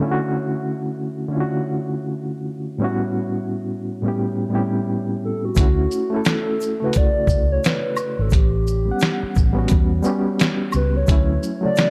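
A swung 87 BPM lo-fi hip hop groove in D major carries this cosy, dreamy excerpt, where a reedy electric piano with fast tremolo plays Dmaj7 and A13 chords under a filter sweep, joined at 5.2 seconds by a hollow, woody clarinet-like synth lead. At 5.6 seconds a gritty, tape-warm sampler-style drum kit with a thumpy kick, a round foam-muted fingered bass and a faint, dry egg shaker and woodblock come in, all softened by a moderate spring reverb and a dark production.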